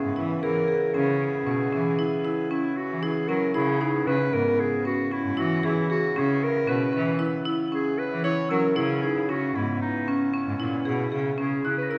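Contemporary chamber music in an uneven 5/4 meter, this pensive yet urgent passage, cut from a longer piece, rests on a C#m7 chord throughout. A bright, classical-style solo clarinet carries the melody up front, while a woody marimba struck with hard mallets on rosewood bars spins percussive, close-miked arpeggios that sit just as prominently. Beneath them, a single bowed cello supplies the bass with a rich, biting tone and light vibrato, and a pedal harmonium holds reedy, breathing chords until about 11.3 seconds. From 3.6 seconds a large celesta adds a delicate, bell-like shimmer from the background. The ensemble sounds as if recorded in a church or concert hall, with a lush, wet reverb and a faint mains hum.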